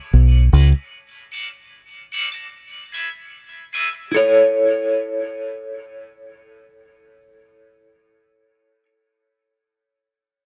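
An echo-heavy mix with light reverb and a small-room ambience frames this laid-back, spacious reggae fragment at 75 BPM in A major, cut from a longer piece. A dark, round, foam-muted fingered bass, punchy and up front, sounds only briefly from 0.1 to 0.7 s, and a clean, hollow-body semi-hollow guitar enters at 0.5 s. The picked guitar carries the accompaniment through 8.9 s with tremolo, a high-pass filter and dub echo over chords moving from Bm through D and E to A.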